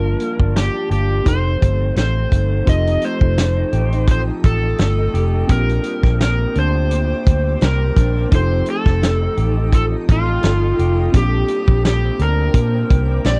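An overdriven slide guitar carries the melody through this wistful, hazy excerpt of indie and bedroom pop, its tone thickened by lush chorus and a slapback echo. It moves at 85 BPM in 4/4 with a light swing on the sixteenths, over chords that shift from Gm7 to F9 and then between Bb69 and F9. Up front, a dark, round, foam-muted electric bass sits punchy and forward from the start, and a gritty, saturated drum kit with a tight kick and rolled-off top enters at 0.2 seconds. Beneath the lead, an electric guitar through a small old amp adds slightly broken-up, picked accompaniment with chorus and vibrato, while warbling, detuned synth keys sit mellow and nostalgic in the background. From 3.7 seconds a shimmering, ethereal pad with an octave-up sheen and its own reverb drifts in high and soft. The whole recording has a dry, close 1970s-style studio sound.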